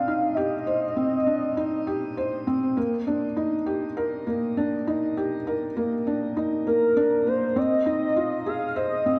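In a straight 4/4 pulse, this cinematic, moving electronica excerpt sets a felt-muted upright piano riff, mellow and intimate with short sustain, up front through shimmer reverb and tape echo. A velvety synth lead with a fast attack carries the melody from 0.0 to 2.5 seconds and returns at 6.7 seconds, its smooth, wave-folded sawtooth tone thickened by unison, chorus and vibrato and trailed by shimmer reverb. A wet recital hall reverb surrounds both parts as the harmony moves from Cmadd9 through Ebmaj7/Bb to Ab6.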